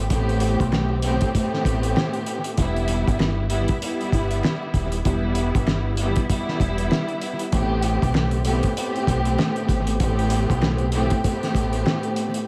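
A swung boom-bap hip-hop groove at 97 BPM in 4/4 sets the pace, its cloth-damped drum kit landing a fat snare, a tight kick and hi-hat with a muffled, gritty, saturated thud that sits up front with its top rolled off and a touch of analog delay. Beneath it, a deep dub fingered electric bass plays round and dark in the low register, stopping at 11.8 seconds. A lush, bowed studio string section carries the harmony from the start, smooth and even with vibrato, its close ensemble sound coloured by cassette tape, filtering and analog delay. The chords move from Am7 to Em at 2.6 seconds and back to Am7 at 7.5 seconds, giving the mood a reflective, dark cast. Very quiet finger snaps, vintage and band-limited, add a human touch, while light small-room reverb, an echo-heavy mix and vinyl crackle frame this short cut from a longer piece.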